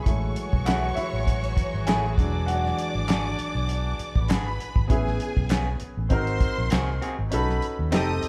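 A cloth-damped drum kit plays through this short cut from a lush, smooth 1970s-style soul groove at 99 BPM in A major, its fat snare, tight kick and hi-hat sounding dark, dry and rolled-off at the top, with a gentle sixteenth-note swing. Underneath, a vintage foam-muted fingered electric bass sits up front, round and punchy, while a grand piano with natural, short-sustained tone carries a solo passage from the start until 4.9 seconds. A studio violin section plays a second line above with expressive vibrato and portamento and a touch of slapback echo, and a softer string section floats sustained, sul tasto chords beneath it until 4.9 seconds. From 0.7 seconds an electric guitar through a small old amp adds a slightly broken-up, lo-fi, compressed riff, and crisp handclaps sit close and dry in the background. The band sounds like it is playing live in one room, bathed in a large, wet studio reverb, as the harmony moves from F#m9/A and E9 into Amaj9, G#7 and B7.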